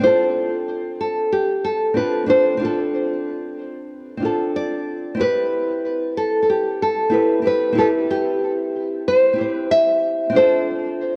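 Two fingerpicked nylon-string guitars open this smooth, relaxed chillout fragment at 93 BPM in A minor: a dark, small-sounding melody guitar with tape echo sits up front over a full-bodied, deep classical accompaniment with audible finger squeak, moving from F6/C to a rootless Am7 and back, all bathed in a lush hall reverb and the warbly pitch drift of worn cassette tape.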